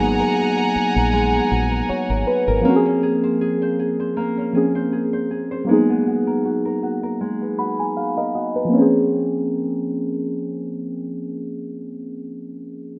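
A late-night, longing contemporary R&B excerpt at 79 BPM in 4/4, with a gentle 16th-note swing, opens on muted, felt-like synth keys, close and intimate with a dark triangle-and-sawtooth tone, a faint noise layer, chorus and a filter sweep, sitting up front. Beneath them, a sul tasto chamber string section holds soft-attack chords with light vibrato, a round, punchy dub bass with a foam-muted thump anchors the low end, and a very quiet electronic downlifter slips in. Strings, bass and downlifter all fall away at 2.6 seconds as the harmony moves between Abm9 and Bbm9. That leaves the keys and a fingerpicked classical nylon-string guitar, present from the start, whose arpeggios carry finger squeak and drift through tape echo and plate reverb. The keys add a fill around 7.2 seconds and ring on until 13.0 seconds, slightly outlasting the guitar. The sound has the rough, homespun balance of a demo mix with moderate studio ambience.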